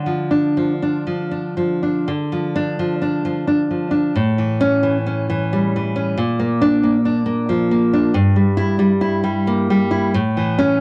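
Rubato in an uneven 3/4 at 89 BPM, this melancholic, wistful romantic excerpt in D minor features a solo nylon-string guitar, bright and fingerpicked with audible finger squeak, sitting up front with a cassette-tape grain in a small room with light reverb as it moves from Dm through A7, Bb and Edim/G to land on A at 10.1 seconds.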